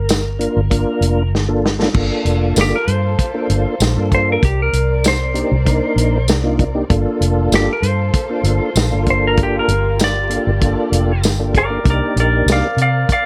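Soulful and brooding, this excerpt of straight-eighth soul blues in G minor at 97 BPM sets a dry, mid-forward drum kit with tambourine and a round, foam-muted fingered bass under a lightly overdriven tonewheel organ with key click, chorus vibrato and slow rotary, while a dark, compressed lap steel slides into a solo at 1.9 seconds as a woody, lush string section enters in the background over Gm9 and Cm9 chords.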